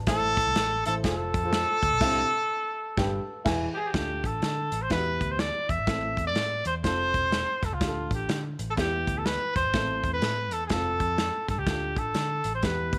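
Driving and urgent, this uptempo 1960s-style soul excerpt in A minor swings at 124 BPM as a clear, lightly vibratoed trumpet carries the melody up front over a dark, woody upright piano, a round, foam-muted picked electric bass and an acoustic drum kit with crash, hi-hat, a tight kick and snare, the band hitting an accent from 2.0 to 3.9 seconds before the progression moves on through Dm, Em, Am and F in light studio reverb.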